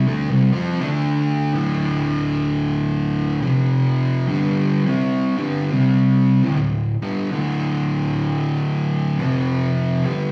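Heavy and brooding, this short metal passage, cut from a longer piece, rests entirely on a single fuzz guitar that plays alone for its full 10.3 seconds. The picked electric guitar is distorted and double-tracked, sitting up front with a slapback echo that thickens each note as it ranges from D2 up to F4. The groove is in 4/4 with a lightly swung eighth-note feel, and the power chords move through C5, D5 and F5 to a Gsus4 before cycling back through the same shapes. A brief opening idea gives way at 1.5 seconds to a longer second section that carries the rest of the clip. The sound is a rough rehearsal-room recording with a warm, saturated edge, wrapped in a wet stone-room reverb that lends the riffing a close, dense weight.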